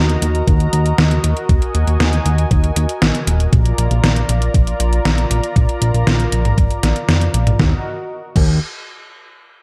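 Synthwave in Eb harmonic minor at 118 BPM, nostalgic and nocturnal, cut from a longer piece and moving from Ebm to Bb before returning to Ebm at 7.6 seconds. A smooth, warbling vintage pad holds sustained chords under lush chorus and sidechain pumping, while a thick, nasal, detuned sawtooth bass with tube saturation and a filter pluck sits up front. A detuned 8-bit drum machine brings a fat snare, crash, hi-hat and toms through gated reverb, joined at 0.5 seconds by a thumpy, sampler-style electronic kick, with a light reverb over the mix.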